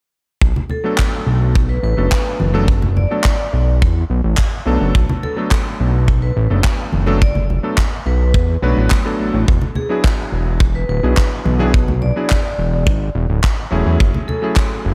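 A fat, detuned sawtooth analog bass and a punchy, up-front kick open this sleek, cosmic nu-disco excerpt at 0.4 s, soon joined by small-room congas, a metallic, ringing vibraphone struck with hard mallets through analog delay, a clear, vintage electric grand piano with sidechain pumping and diffuse ambient delay, and airy, gated handclaps, over chords moving from Bm7 to E9 at 9.5 s and F#m9 at 14.0 s in light studio reverb.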